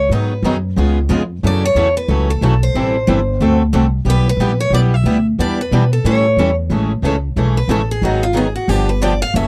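A swung eighth-note pulse in 4/4 drives this lively, brisk slice of acoustic string swing in the jazz manouche tradition, cut from a longer piece. An up-front pizzicato upright bass with gut strings gives a woody, thumpy, dark foundation, while two picked acoustic guitars fill in the accompaniment: one a concert-style steel-string with audible finger squeak, the other a boxy swing-style guitar. On top, a bright parlour steel-string guitar with fresh strings carries the melody, sitting up front alongside the bass. The harmony moves through jazz changes such as G#m7, C#7, F#m7 and Am7 to D7 to G6, then shifts at 6.7 s to Amaj7, where a steel-string guitar takes a solo over the closing bars. The sound is a dry, close 1970s-style studio recording with little reverb, keeping every pick attack vivid and immediate.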